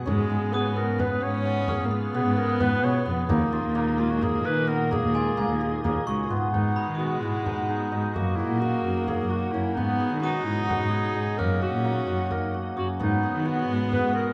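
Urgent and hypnotic, this contemporary chamber piece moves in a straight 7/8 at 260 BPM counted in eighths, settling into G# minor from 6.5 s. A bright, shimmering hammered dulcimer spins ringing arpeggios from the start, while a soft, organ-like pad holds sustained chords in the background, its pure, warbling tone thickened by ensemble chorus and built-in reverb. A warm, vintage clarinet carries the melody with vibrato, a subtone and a soft attack in a jazz style, as a dark viola plays an intimate second line with an airy bow sul tasto. Underneath, a woody, up-front cello bows the bass, and a frame drum adds quiet percussion from the back of the mix. A metallic, bell-like glockenspiel struck with hard plastic mallets appears in short bursts, first at 0.5 s and last at 10.2 s. The harmony shifts from C#7/G# and D#sus4 into a hypnotic alternation of G#m7 and D#m7/F#, captured with close, detailed microphones and light reverb in this cut from a longer piece.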